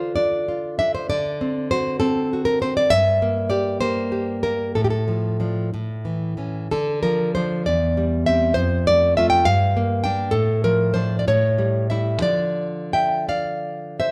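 A fingerpicked nylon-string guitar opens this passionate, intimate romantic solo classical piece in D minor, playing up front with an acoustic, warm tone across a rubato 6/8 pulse of about 55-69 BPM and ringing in a wet stone room reverb, as its harmony moves from Dm through D7, Gm and A7 before settling back on Dm near 12.3 seconds in this 14.1-second fragment of a longer work.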